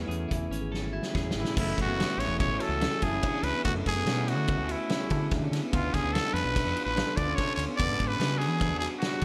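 Math rock and midwest emo in a bright, playful mood, this short excerpt cut from a longer piece moves in a straight 5/4. A ringing stainless-steel handpan plays arpeggios with digital delay, over a growling fingered bass that is round and overdriven, while a twangy, compressed twelve-string electric guitar sits in the background as accompaniment until 3.6 seconds. A loose indie drum kit with dark cymbals, a punchy kick and gated reverb comes in at 0.1 seconds and plays a fill from 0.7 seconds. A raspy, gritty trumpet with light vibrato takes the melody up front from 1.4 seconds, its delay trailing the line. The chords move from Amaj7 to F#m9, then Dmaj9, Dm6 and E9, in a bright 1980s-style digital production with a small room ambience.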